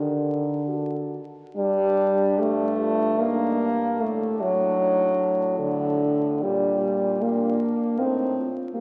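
This sounds like a very old 78 rpm record, with vinyl crackle over a wet church reverb that lingers for about 2.8 seconds. It is a melancholic, solemn classical piece for horn quartet in G minor and 3/4 time at 75 BPM, with uneven beats and a rubato feel, cut from a longer work. Two mellow French horns sound distant and roomy: one carries the accompaniment up front between D3 and C4, and the other holds the bass from G2 to D3 with a light vibrato. The melody horn has a warm, vintage tone with light vibrato and sits in the background between D4 and Bb4. A dark-toned horn plays a very quiet second line in the same range. The harmony moves from Gm/D into a second section at 1.6 seconds, passing through Gm and D/A before settling on Gm/Bb at 6.4 seconds, with every horn sounding throughout the 8.8 seconds.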